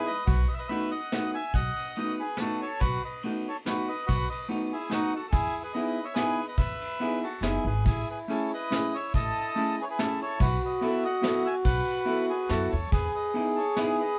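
A musette waltz in 3/4 with a lightly swung lilt, this short excerpt feels whirling and charming, like a band playing live together in one small room with a moderate, brief reverb. A reedy, dark bandoneon carries the melody close and up front, sounding dry and full, while a vintage hollow-body jazz guitar, clean, picked and electric, supplies the accompaniment with a shadowy tone that also sits forward. An upright bass played pizzicato gives a woody, steel-strung foundation, and a vintage brush drum kit with a tight kick, medium-tuned snare and dusky, rolled-off cymbals keeps the waltz turning. At 7.8 seconds a mellow, round single-reed accordion enters as a second line, adding a soft, rounded color through the end. The harmony moves through B7, Emaj7, Amaj7 and B7sus4 before settling back on Emaj7.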